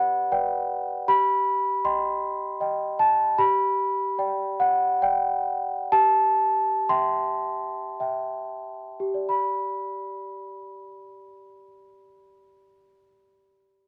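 Classical lullaby for solo celesta in G major and 3/4, dreamy and innocent, moving with a rubato feel between 44 and 79 BPM and slowing from 2.2 to 9.3 seconds before a new section begins at 9.3 seconds. The large celesta sounds bell-like and sweet, with soft felt hammers giving a mellow, ringing, vintage and band-limited tone that sits up front, touched by a slapback echo as it moves between G4 and C6 over chords of G, Cm/G and C/G. The close, dry 1970s-style studio recording carries light reverb and is cut from a longer piece.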